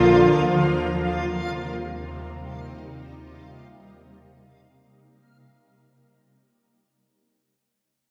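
Peaceful and serene, this ambient passage in Eb major floats in free time, tuned to A4 = 443 Hz and cut from a longer piece, with an Eb6 chord arriving at 0.5 seconds inside a fade-out that runs to 4.7 seconds. A bright, ethereal pad with an octave-up shimmer, chorus and phaser sits up front holding sustained chords, while a reversed, dreamy granular texture hovers above and a bowed double bass section played sul tasto gives an intimate low foundation with light vibrato. A soft FM synth bell adds barely audible arpeggios until 6.0 seconds, and the mix is steeped in an echo-heavy chamber reverb with a cassette tape character.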